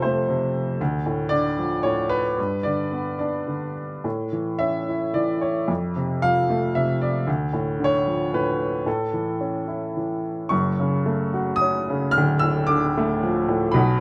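A clear, woody upright piano plays alone from the first moment: a lyrical classical solo in a relaxed 3/4 at around 105-119 BPM with a rubato feel, ranging from D1 up to F6 as its harmony moves through F, Dm, G and A. At 10.5 s the music turns to a new passage in F# minor, and this short excerpt ends at 14.0 s. Close, detailed miking keeps the piano's natural tone up front, with light reverb adding a warm sense of space.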